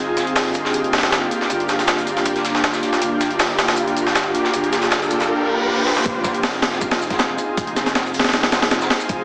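A heavily compressed, radio-like sound with vinyl crackle and a small-speaker quality frames this nostalgic, raw drum and bass clip, cut from a longer piece, where an ethereal, airy pad with chorus and sampler grit sits up front over a deep, round sub bass. From 0.2 seconds a thumpy, sampler-style breakbeat kit with a high-tuned snare drives the build-up, backed by a darker, saturated acoustic kit with hi-hat and shaker further back. A background riser and reverse cymbal lead through a drum fill into the drop at 6.1 seconds, where the harmony moves from Gm7 to Fm7.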